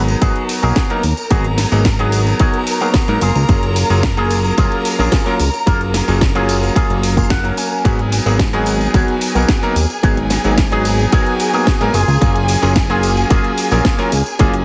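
A fat, saturated analog bass sits up front in this sunny, groovy nu-disco excerpt, joined by a punchy electronic kick, a house kit with a cracking snare and hi-hat, a distant tambourine, a twangy envelope-filtered electric guitar riff with chorus and delay, a bright, clangy electric grand piano carrying sampler grit, filtering and delay, and a bowed violin section holding sustained chords in the background, with a clean electric guitar fill at 7.0 seconds, all under light reverb and a heavily compressed, radio-like sound with faint mains hum.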